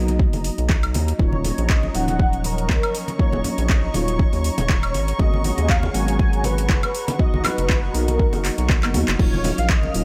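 A swung 120 BPM deep house groove in Eb minor, cut from a longer piece, rides on an overdriven, up-front electronic kick, a metallic-hatted kit with handclaps, crash and woodblock, and damped, low-tuned congas tucked in the background and breathing with sidechain pumping, all over a round, wave-folded analog bass. A detuned sawtooth pad warbles through sustained chords while a soft, dark FM electric piano jabs stabs through chorus and phaser, moving from Bmaj7 to Ebm9 and Abm11. From 1.2 seconds a horn-like synth lead with vibrato and analog delay carries the melody over a hushed, sul tasto violin section, and a drum fill at 8.8 seconds keeps the moody, dry mix rolling.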